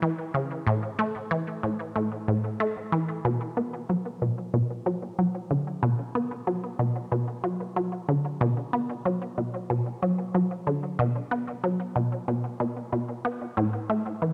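A resonant blip pluck plays alone through this short ambient excerpt, its juicy, squelchy sawtooth tone detuned and bright, with a fast attack and short decay, sitting up front in the range from A2 to B3 and treated with chorus and analog delay. The mood is mysterious and cosmic, moving at 93 BPM in a straight 4/4 in B minor, tuned to A4 = 437 Hz. A moderate plate reverb surrounds the sound, and a new section begins at 3.2 seconds and runs to the cut at 14.3 seconds.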